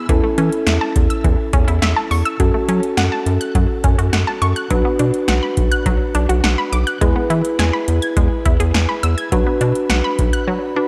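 A mellow tine electric piano and a lush, detuned unison pluck open this driving, melancholic synth-pop excerpt together, the piano's clean chords and the pluck's bright, warbling arpeggios both bathed in shimmer reverb, with a slapback echo on the pluck. Moments later a rubbery, hollow square bass and an analog drum machine with a deep kick, punchy snare and metallic hats arrive up front, the drums carrying a tape-warm, roomy character. The chords move from A/E through F#m, Bm and E back to Bm within a light digital ambience, and a brief silent gap follows at 10.5 seconds.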